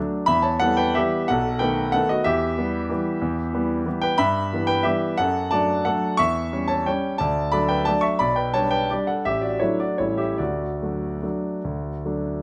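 A clear, polished concert grand piano plays alone and up front in this playful, sparkling classical waltz in 3/4 and D major, moving with a rubato feel between 141 and 197 BPM, its deep bass and present tone set in light reverb and captured by close, detailed microphones, as the harmony opens on E minor and B7 before passing through G-bass and F#-bass chords to settle from A7 onto D at 10.4 seconds in this fragment cut from a longer piece.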